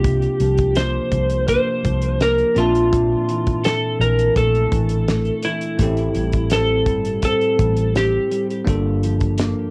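A straight 4/4 pulse at 84 BPM comes from a damped 70s drum kit of kick, snare and hi-hat, its fat snare and tight kick sounding dry, with a rolled-off top and a cassette-tape tint. Beneath it, a vintage muted fingered electric bass stays low and round, foam-muted but punchy. This short indie pop and bedroom pop excerpt, cut from a longer piece, feels mellow and lonely as the chords move from C9sus4 to Bbmaj9#11, then Am7, reaching Gm7 at 8.7 seconds. Up front, an electric slide guitar carries the melody until 8.5 seconds, dark and slightly broken-up, compressed, and coloured by analog chorus, cassette tape and plate reverb. A bell-like tine electric piano adds bright, clean, direct accompaniment through cassette tape, while a mellow electric guitar plays clean, fingered lower lines washed in lush chorus and vibrato. The whole home cassette recording sits in a moderate small room, giving it an intimate, homespun character.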